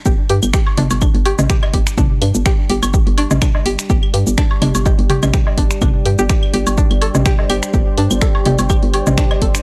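Sparse and cool, this excerpt of minimal techno with a light 16th-note swing sets a punchy, tape-warm electronic kick up front under a hollow, bouncy FM bass, a twangy string-like resonator pluck riff with chorus and analog delay, finger snaps, hi-hat and shaker from an analog drum machine, small-room claves, woodblock and toms, and a deep, warbling dark pad in the background, with a very quiet bubbling stepped-filter texture surfacing at 7.4 seconds, all captured in a dry, gritty hardware recording.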